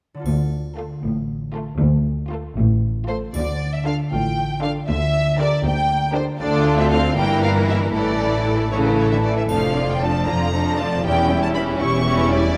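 A ringing concert harp opens at 0.1 s with background arpeggios, soon joined by distant cellos and rich double basses on the bass and a close, dry triangle, before lush violins take the melody from 0.8 s over a focused second violin line and smooth viola accompaniment, giving this sneaky, magical, whimsical film cue in D minor its playful 6/8 motion at 78 BPM within a moderate scoring-stage reverb, with the triangle returning at 9.5 s.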